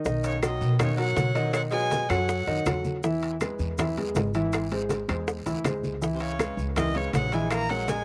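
A warm, intimate grand piano and grainy, mellow maracas open this lively, sophisticated Afro-Cuban jazz excerpt, moving at 161 BPM in 4/4 with a straight feel in B major, tuned to A4 = 436 Hz. Almost at once an up-front pizzicato upright bass, dark and growly with a thumpy, woody tone, joins alongside tight, high-tuned bongos carrying a slapback echo, thick-skinned low-tuned congas and a raspy guiro, with ringing metal-shell timbales and vintage-sounding claves following moments later, most of the hand percussion sitting in the background. From 0.2 seconds an edgy, punchy tenor saxophone adds a forceful second line with scooped notes, and at 0.3 seconds a clear, bowed fiddle with light vibrato takes up the melody in a biting, nasal, earthy voice, both touched by slapback echo. The fiddle and saxophone fall silent at 2.8 seconds and return at 6.1 seconds, leaving the piano, with its audible action noise, and the rhythm section to carry the harmony through Bmaj7, B7, E, G#aug, C#m7 and F#9. 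The sound is dry and close, with little reverb, giving the ensemble an immediate, present feel.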